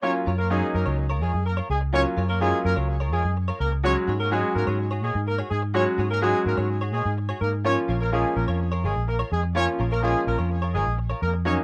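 A muted, fingered electric bass sits up front with a dark, round and punchy amped tone, entering at 0.3 s and anchoring this confident, energetic pop clip cut from a longer piece. Beside it, a baby grand piano plays accompaniment with a clear, polished, present sound from the very start. A horn section carries the melody with a warm ensemble tone, light vibrato and a roomy, distant character, its lines trailed by delay. A clean electric guitar, recorded direct and compressed, picks a riff through an analog chorus. The whole passage plays as a drop over a straight 4/4 pulse, moving through Gbmaj7, Dbsus4 and Bbm. The sound is a rough home demo mix with light reverb and a high-pass filter thinning the low end.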